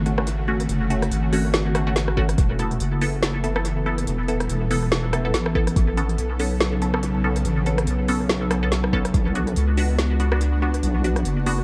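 A string-like drone with a bright, tense sawtooth edge and vibrato opens this meditative, dark stretch of deep dubstep alongside a deep, saturated wobble bass that stays up front throughout. The tempo is 142 BPM in 4/4 with a half-time feel and a swung sixteenth-note groove, carried by a deep house kit of woody snare, smooth hats and rim clicks that trail off into analog delay. Muted, resonant dub chord stabs with a plucky filter and phaser float through echo, moving through F#m, Esus4, Aadd9 and Bm. A deep, layered electronic kick lands only in brief hits, first at 2.2 seconds, then at 5.6 and 8.9 seconds. Vinyl crackle and heavy echo over light reverb give the mix a dusty, echoing feel in this 11.6-second cut from a longer piece.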